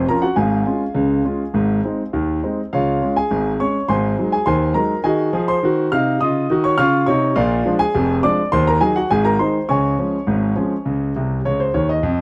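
A clear concert grand piano plays this short ragtime excerpt on its own, at a moderate 103 BPM in a straight 2/4 in D-flat major. The mood is playful and cheerful, with the harmony moving from Db through Ab7 and Bb7 to Ebm before settling back on Db. The solo piano ranges from a deep bass to high upper notes, and its sound is intimate and somewhat boxy, with long sustain and audible action noise from the instrument itself. Near the end, between 11.2 and 12.0 seconds, a piano fill closes the phrase. The recording is dry and close, in a 1970s studio style, with the piano sitting up front.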